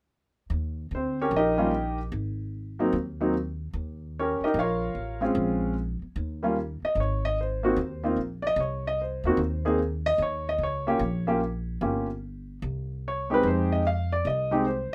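A swung 4/4 pulse at 148 BPM carries this relaxed jazz piano trio passage in Eb mixolydian, cut from a longer piece. The upright bass starts things at 0.5 seconds, its plucked steel strings sounding woody and acoustic, sitting low and up front beneath the piano. At 0.9 seconds the concert grand takes the melody, its intimate, natural tone carrying a deep bass and audible action noise that puts the listener close to the instrument. The harmony moves through chords such as Eb7, Eb9, Bbm7 and Gm7b5, with a brief chordless moment at 6.2 seconds before settling on Ab and closing toward Fm7. Light reverb gives the recording a gentle sense of space, and the mood stays warm and easygoing throughout.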